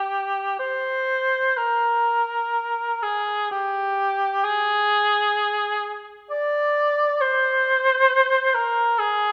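A lone cor anglais opens this short classical fragment, its mellow, vibrato-tinged voice unfolding in free time across a narrow range from G4 to D5. The mood is yearning and meditative, with the solo line sitting up front yet carrying a distant, roomy quality from the moderate reverb of a scoring stage. The passage lasts about 9.3 seconds and is cut from a longer piece.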